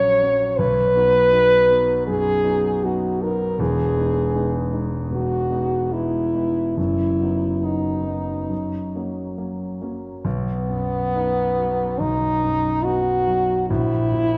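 Romantic classical music for French horn and concert grand piano, this lyrical, serene fragment is cut from a longer piece and moves with a flexible rubato between 68 and 83 BPM in 4/4, centred in B major. The French horn carries the melody from B3 to C#5 with a light vibrato, its tone warm yet distant and roomy while still sitting up front as the solo voice. Beneath it the grand piano supplies the accompaniment, reaching down to E1 for a deep, warm bass and rising to D#4. The harmony settles from F#/A# onto B, passes through Emaj7 and B/F#, and reaches F# before a second section begins at 10.2 seconds back on B. A wet concert hall reverb with a 1.9-second decay surrounds the duo, and the harmony drops away at 13.7 seconds before the fragment stops at 14.4 seconds.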